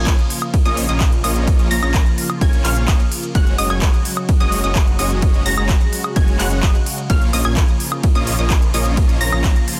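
A straight 4/4 groove is driven by a punchy, up-front electronic kick and a layered big-room drum kit of handclaps, crisp hi-hats, ride cymbal and woodblock, all with a small-room character in this euphoric, powerful festival progressive house cut. A thick detuned saw bass with chorus and tube saturation pumps under a huge, compressed supersaw riff with delay and vibrato. Lush, punchy, decaying unison pluck arpeggios with a cassette-tape tint and delay sit high above, while an airy, slow-attack pad with chorus and phaser holds sustained chords in the background over a move from Bbm to Gbsus2 and back, all packed into a dense, heavily limited, fairly dry mix.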